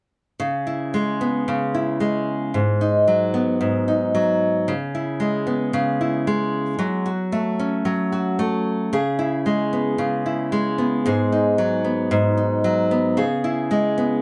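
A moderate studio ambience surrounds a lone nylon-string guitar, placed up front with an acoustic, classical tone. In this wistful, reflective pop excerpt at 113 BPM in C# minor, tuned to A4 = 442 Hz, the fingerpicked guitar plays accompaniment from 0.4 s, moving through C#m7, G#m7 and F#m chords. A second passage begins at 8.9 s and returns to C#m7 before the clip ends at 14.2 s.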